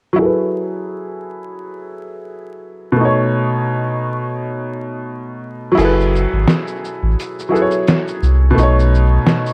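Lo-fi hip hop with a melancholic, hazy swing opens on a woody, slightly detuned upright piano, cassette-worn and filtered, moving between F#m11 and B9 under a filter sweep. At 5.8 seconds a thick, deep sub bass and a muffled, pitched-down sampler-style kit of snare, hi-hat, shaker and crash arrive together, the kick muted, all set in an echo-heavy mix with light reverb and vinyl crackle.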